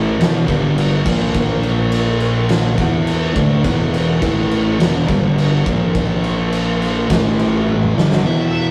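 A rough rehearsal-room recording with light reverb gives this short cut from a longer stoner and doom metal piece a heavy, ominous air at 104 BPM in a straight 4/4. Two thick fuzz guitars sit in the background, their dark, picked tone grinding through a riff built on power chords such as E5, G5 and A#5. A fingered electric bass adds a bright, growly, overdriven layer beneath them. Up front, an oversized low-tuned drum kit pounds with a fat snare, punchy kick, toms and crash cymbal in a gritty, saturated stone-room sound, closing with a fill as the music lands on E minor. From 3.6 seconds a very quiet tonewheel organ holds clean sustained chords through a slow rotary speaker. At 8.3 seconds a compressed fuzz lead guitar with wah enters on a single high E just as the cut ends.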